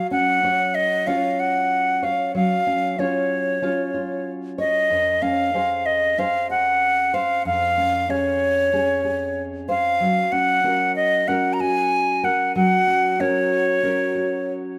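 A breathy, close-miked silver flute with tape echo sings an expressive, tongued, straight-toned melody up front over fresh-stringed nylon guitar arpeggios, thumb-plucked in a classical style, in this wistful, autumnal folktronica fragment at 94 BPM, moving from Gb5 to Dbmaj7/F at 4.9 seconds and settling on Gb at 10.0 seconds inside a moderate echo-chamber reverb.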